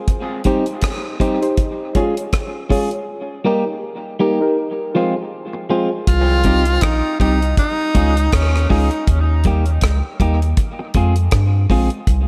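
A dry, up-front reggae drum kit of tight kick, hi-hat and rim click opens this heavy, spacious dub excerpt at 0.1 s, soon joined by clean, compressed picked electric guitar trailing dub echo and reedy, worn, slightly out-of-tune electric piano stabs bathed in spring reverb and echo over a Cm, Db, Eb, Fm cycle. At 6.1 s a deep, round sub bass enters up front and a bright, close-miked tenor saxophone with vibrato takes a short echoing solo melody until 9.1 s. The swung, echo-heavy mix sits in a light reverb.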